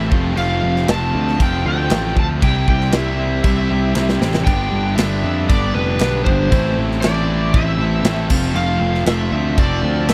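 A growly, fuzz-drenched picked bass sits up front in this gritty, brooding classic rock excerpt at 117 BPM, where an overdriven slide guitar carries a bright melody over a crunchy guitar riff and a second overdriven riff in the background, a punchy big-room acoustic drum kit with a fill at 4.0 seconds, and crisp group handclaps that join at 0.9 seconds, set in a dry, close 1970s-style studio recording over an F, C, G, A minor progression.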